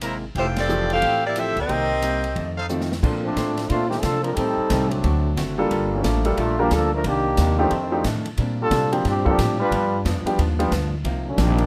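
A rough home-demo sound in a moderate studio room frames this brassy, swinging big band excerpt, with a woody, thumpy pizzicato upright bass, an airy drum kit with a punchy kick, and a clean hollow-body archtop guitar tucked in the background running throughout. Bright trumpet stabs and a tight, up-front saxophone section carrying the melody with vibrato open the passage, joined by a clear baby grand piano at 0.7 seconds and marked by a band accent and a short drum fill. From 3.2 seconds a bright trombone section takes a solo with light vibrato over rich extended jazz chords, with the piano returning at 5.6 seconds.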